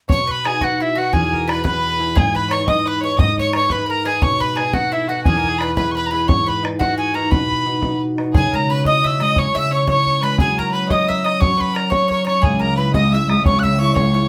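Celtic folk jig in B major at 117 BPM in 6/8, bright and cheerful, with an airy, up-front tin whistle carrying the melody over a picked, double-strung mandolin and a clear, intense bowed fiddle on second lines, a mellow, ringing fingerpicked concert harp, and a damped, tight bodhran, all played live in one room with moderate studio ambience, while a dark, woody, distant cello enters only at 12.4 seconds near the end of this short cut from a longer piece.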